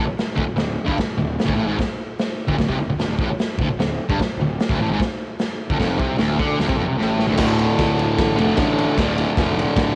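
Swaggering, gritty garage rock cut from a longer piece, where a double-tracked, compressed fuzz guitar riff sits up front on a D5 chord with cassette-tape grit, a growly overdriven fingered bass rumbles in the background, and a saturated, rolled-off acoustic kit with a punchy kick plays a fill from 7.0 seconds into a shift to D minor at 7.4 seconds, all in the small-room ambience of a home cassette recording.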